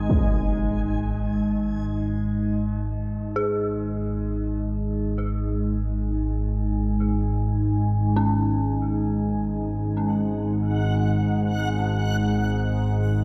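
Ominous and dark, this dark ambient drone excerpt drifts in free time, built on an analog drone that sits low and up front from the start, its vintage sawtooth and wave-folded tone warbling and slowly evolving under a chorus. Above it, a deep, full-bodied pad of detuned unison sawtooth and sine with a sub octave holds sustained chords through the whole passage, mellow and moody with chorus and its own reverb. At 3.4 seconds a dark, detuned synth bell enters with eerie, inharmonic FM arpeggios whose fast attacks decay into chorus and a dub echo. A reversed, swelling texture, dreamy and bright with a granular, detuned triangle character, appears for a moment at the very start and returns from 10.7 seconds, sitting quietly at the top of the range. A moderate plate reverb and an echo-heavy mix give the whole passage a cavernous, suspended feel.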